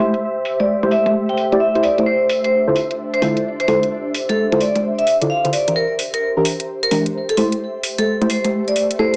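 Heard through a low-pass filter with a small-speaker sound, a filter sweep running throughout and a moderate plate reverb, this late-night, soulful fragment of two-step UK garage moves at 130 BPM with swung 16ths over Am7, Dm9, Em7b5 and back to Am7. Up front, deep, dark chord stabs with detuned, gritty 12-bit sampler character pass through chorus and phaser. An ethereal, slow-blooming pad with ensemble chorus drifts beneath them, while a ringing vibraphone played with hard mallets carries the melody through digital delay and a medium motor vibrato. Electronic hi-hats and congas, filtered and tape-toned with metallic hats, join at 0.1 s.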